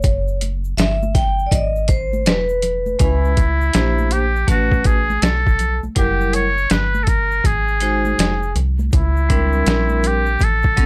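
A swung, relaxed jazz-hop groove rides on a gritty, pitched-down, tape-warm boom bap drum kit with a thumpy kick and medium-tuned snare, while a dark, metallic FM bass with transformer saturation sits up front, a ringing hard-mallet vibraphone with slow motor vibrato lays down smooth jazz chords, bright egg shaker and congas murmur in the background, and at 3.0 s a buzzy, breathy muted trumpet enters with intimate, scooped notes over a dry, gritty hardware sound.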